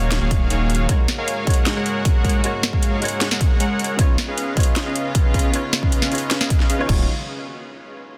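Future bass at 155 BPM in a half-time feel, emotional and bittersweet, where a fat, detuned sawtooth polysynth riff with tape echo and a filter sweep leads over a background of clear piano and floating bowed strings, all sidechain pumping through Ebm11, Ab9sus4 and Db7, while a punchy layered electronic kick, trap kit with metallic hats and a sharp snare, and a thick saturated sub bass heard only near 0.0 and 6.9 seconds drive a dense, heavily limited excerpt cut from a longer piece.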